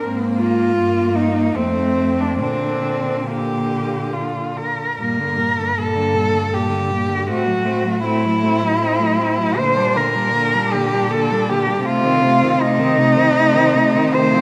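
Tender and lyrical, this fragment of a classical piece for cello ensemble unfolds in a rubato 3/4, with an up-front cello carrying the expressive bowed melody in a rich tone full of vibrato, soft attacks and sliding portamento, two more cellos shaping a second line and an accompaniment with the same singing vibrato and slides, and a close, intimate bass cello played sul tasto with light vibrato and an airy bow, the ensemble framed by a moderate concert hall reverb as the music moves into a new section at 5.0 s.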